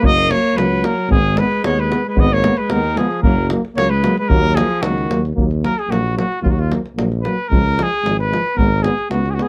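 Balkan brass band folk in Eb minor at 112 BPM in a straight 2/4, fiery and virtuosic, with a warm, up-front trumpet carrying the melody and taking a solo from 5.4 seconds, a clear alto saxophone playing a second line in the background until 5.2 seconds, a mellow euphonium and a lightly vibratoed trombone filling out the accompaniment, a soft-attacked tuba holding the bass, and a deep davul driving the percussion, all captured closely and in detail with little reverb.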